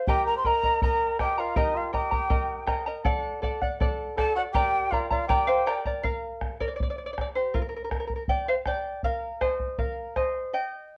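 Festive and earthy, this fragment of Andean folk at 80 BPM in 2/4 sets an airy cane quena with expressive vibrato on the melody above a veiled, cup-muted trumpet second line, while a bright, shimmering fingerpicked charango and a deep, dark bombo sit up front, until the quena and trumpet fall away at 5.8 seconds and the charango takes a solo from 6.0 seconds, the recording heard through moderate studio reverb and worn cassette tape with warbly pitch drift.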